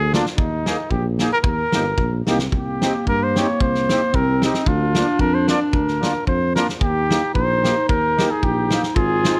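A mellow trumpet melody, up front, and a smooth-topped tuba bass with light vibrato open this jolly, bouncy alpine dance band piece at 112 BPM in 2/4, with a lightly swung, rubato feel. A reedy, sweet accordion with light tremolo tuning and a loose acoustic drum kit with a punchy kick and rolled-off top join immediately, and a classical-style clarinet adds a second line from 2.5 seconds. The harmony moves from Ebsus4 to Eb, Cm7 and Bb/D in a close, detailed recording with light reverb, cut from a longer piece.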